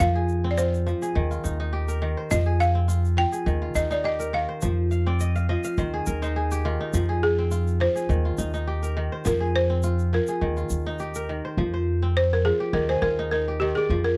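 This dry, close recording has the intimate sound of a 1970s studio session, with little reverb around the players. It is a hypnotic, flowing stretch of West African string and xylophone music, cut from a longer piece, moving at 104 BPM in 4/4 with a light swing on the sixteenths and sitting in F minor over a steady alternation of Fm and Eb chords. Up front, the balafon carries the melody with a woody, buzzing tone from rubber mallets, close-miked and full. It takes a solo from 11.6 seconds to the end. The kora spins bright, ringing, crisp fingerpicked arpeggios and adds a fill at 4.9 seconds. Beneath them, the upright bass plays dark, thumpy gut-string pizzicato, while a grainy egg shaker enters at 0.3 seconds, sitting close and dry in the background.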